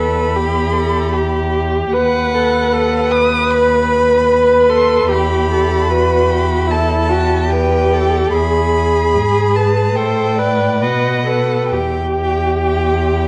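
A string quartet opens together in a slow, melancholic and yearning romantic classical movement in E minor, moving with rubato at 64-77 BPM: the first violin sings a smooth-topped, expressive melody with vibrato and gliding portamento, a focused, distant second violin carries a second line, a close viola supplies soft-attacked, warm accompaniment, and an up-front, rich cello anchors the bass, the quartet bathed in wet recital-hall reverb and the warbling pitch drift of worn cassette tape.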